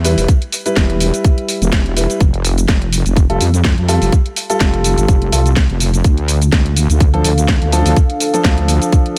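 Gritty and aggressive, this bass house excerpt runs at 125 BPM in 4/4 with a 55% swing on the sixteenths, cut from a longer piece. A heavy, saturated wobble bass with a detuned sawtooth-and-sine tone sits up front, its chorus and sidechain pumping driving the groove from the start. A dark, vintage baby grand piano plays smooth, long-sustaining stabs colored by delay and the same pumping, moving through Em, Fadd9 and then Dm. The tight electronic kick enters at 0.3 seconds and sits up front beside a layered garage kit of cracking snare, warm hats and shaker, both re-recorded in a small room. At 6.0 seconds a deep, moody analog pad with a slow attack and sub octave enters in the background, adding sustained chords alongside the stabs within a digital ambience.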